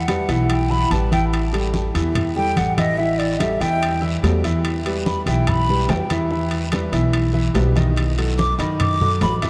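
Sultry and sophisticated, this short Afro-Cuban jazz excerpt in E minor at 145 BPM features a breathy, hollow silver concert flute soloing with vibrato over woody pizzicato upright bass, an open, up-front baby grand piano with long sustain, low-tuned thick-skinned congas, ringing saturated timbales and a raspy, band-limited guiro, all moving through Em, A5 and a closing B7#9 in a vast, echoing cathedral-like space.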